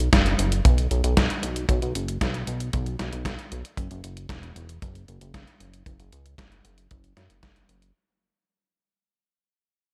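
Romantic and sunny, this short italo disco excerpt moves at 115 BPM in a straight 4/4, fading out across its full 8 seconds. A glossy, retro chorused synth bass built from pulse, sawtooth and triangle tones with ring modulation and a quick filter pluck sits up front, ranging from E1 to F#2, while a detuned 8-bit digital drum machine supplies tape-tinged hi-hat and a medium-tuned snare bathed in gated reverb. A tight, natural acoustic kick drum enters at 0.1 seconds, and the overall mix stays dry.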